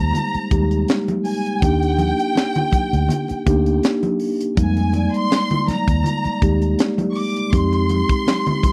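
A lush, distant violin section carries the melody with expressive vibrato in this short cut from a bittersweet, silky 1970s-style soul piece at 81 BPM in F dorian, with a light sixteenth-note swing. Beneath it, a mellow tine electric piano plays through its built-in speakers over a dark, round, foam-muted bass and a tight funk kit with a high-tuned snare, while ringing, hard-hand congas add vintage color. A metallic vibraphone with slow motor vibrato glimmers in the background from 4.9 to 7.8 seconds, and the dry, close studio sound frames chords that move between Fm11, Ebmaj7 and Fm9.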